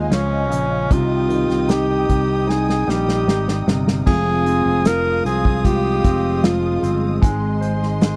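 This excerpt is an emotional, longing pop ballad in F minor at 76 BPM, where a close-miked alto saxophone with vibrato carries the melody up front with a slapback echo from 0.1 to 7.0 seconds. Beneath it, a polished concert grand piano with deep bass accompanies, a growly, punchy fretless electric bass sustains the low end, a lush bowed string section holds chords, and a dark, very quiet fingerpicked steel-string guitar plays arpeggios with audible finger squeak. An acoustic drum kit played with bundle sticks, with a tight kick and medium-tuned snare, sits up front and adds a fill from 2.5 to 4.1 seconds, all captured in a dry, close 1970s-style studio sound as the chords move from Dbmaj7 through Cm and Fm7 to Ab.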